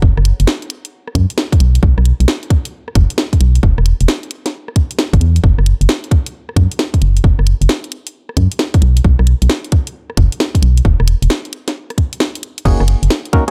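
A hollow, organ-like FM bass sits up front in this soulful, sunny two-step garage excerpt, its fast-attack, decaying notes moving between B5 and unharmonised stretches over a swung 4/4 groove. A tight, tape-warm electronic kick that was re-recorded in a large room drives alongside a layered garage kit of hi-hat, rim click, crash and cracking snare. Only at 12.7 seconds does a mellow, chorused organ stab enter on an F#69 chord, set within dark digital ambience.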